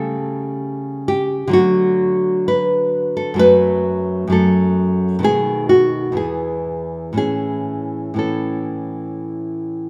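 Set in a moderate recital-hall reverb, this short passage from a longer piece features a solo nylon-string guitar, fingerpicked and placed up front with the warm tone of fresh strings. It is a flowing, dance-like classical piece in the baroque style, played with rubato at roughly 58-69 BPM in 4/4, spanning E2 to B4. It opens in D major on an A7/C# to D progression, then moves toward A major from 3.4 s through F#m, B7 and E before settling on A.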